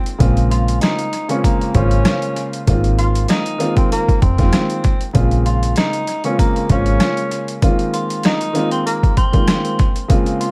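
A gritty, pitched-down boom-bap kit with a thumpy kick, rim clicks and hi-hat sets a lightly swung 97 BPM groove in 4/4. A round, foam-muted fingered electric bass holds the low end until 7.0 s, under a dark, intimate grand piano with audible action noise trading Bbm9 and Ab69 chords through tape echo. Alongside them, a distant, roomy tenor saxophone plays a subtone jazz melody with scooped notes, all set in an echo-heavy, vinyl-crackled mix that feels reflective and shadowy in this brief clip from a longer piece.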